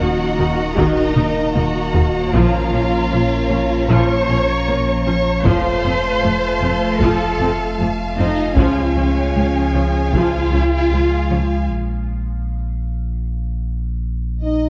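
Tense and relentless, this cinematic hybrid of orchestra and electronics moves at 77 BPM in a straight 4/4, cut from a longer piece and tuned slightly flat to A4 = 437 Hz. A saturated, deep sub bass and a bowed, woody double bass section anchor the low end, while a close, expressive cello section plays a bass line with soft-attack vibrato as the viola section adds dark, lush accompaniment in the background. Two violin sections sit above, a distant, rich one carrying the melody between Db5 and Db6 and a warm, expressive one tracing a second line. Dark, roomy French horns and an evolving, morphing wavetable pad with phaser hold sustained chords through Ebm, Bbm, F and Db, while close, dry taiko played with hard sticks enter at 0.8 s with a fill around 1.2 s. At 11.7 s the harmony drops away into a break, leaving the sub bass, second violins and horns to carry on until 14.7 s, all heard through a moderate scoring-stage reverb and a worn cassette tape quality with warbly pitch drift.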